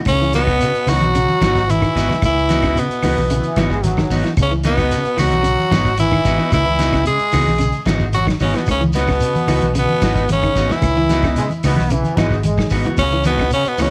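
A twangy, slightly broken-up electric guitar opens this driving, intense afrobeat excerpt with picked arpeggios, set back in the mix and coloured by spring reverb. Almost at once a raspy, gritty tenor saxophone takes the lead up front, its punchy, close-miked tone carrying vibrato and an analog delay, while a bright trombone plays a distant, roomy second line beneath it. A fingered electric bass adds a round, amped low end. A dry, dark soul drum kit with a tight kick and rolled-off top is joined by low-tuned, thick-skinned congas played with soft hands, a grainy shekere in the background and very quiet woody claves. A second, darker guitar adds picked stabs. A tight trombone section with a smooth top and analog delay joins briefly at 3.3 and again at 11.4 seconds. The whole groove rests on one static chord and has the intimacy of a home cassette recording in a small room.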